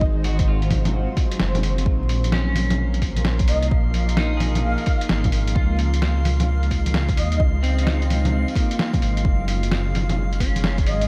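Wistful and melancholic, this future garage excerpt at 130 BPM with a swung 4/4 feel rests on a deep, rumbling detuned saw bass and an overdriven electronic kick under a muffled, pitched-down lo-fi sampler kit of bongos, hi-hat and snare, while a cloudy granular pad with 12-bit grit and a slightly broken-up chorused electric guitar pump against the kick through Ab, Dbadd9 and Gbsus2, a breathy flute-like lead floats in the background chiefly between 3.5 and 7.4 seconds, a glassy drifting harmonics texture enters at 2.9 seconds, and vinyl crackle sits over it all.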